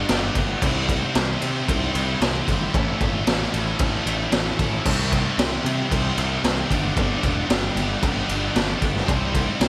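A straight 4/4 pulse at 114 BPM drives this restless, anthemic slice of quiet-loud alternative rock, cut from a longer piece and moving through G, C and A. An up-front, gritty garage drum kit, with a boomy kick, medium-tuned snare, crash and ride, enters at 0.1 seconds, while a growly fuzz bass with overdrive sits beneath three picked guitar riffs: a crunchy overdriven part, a very quiet scooped high-gain part, and a double-tracked scooped part with distortion and slapback echo set in the background. Light small-room reverb surrounds the mix, and the drums sound saturated and warm.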